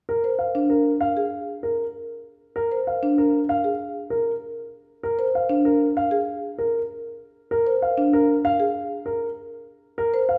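Bathed in the lush reverb of a recital hall, this brief cut from a longer minimalist classical piece moves at a propulsive, bright 97 BPM in straight 4/4 over a Bb7 chord in Bb mixolydian, with an up-front, warm concert grand piano carrying the melody with deep bass beside a woody, mellow, round marimba played with soft mallets spinning arpeggios, both sounding together from the opening moments until about 10.4 seconds.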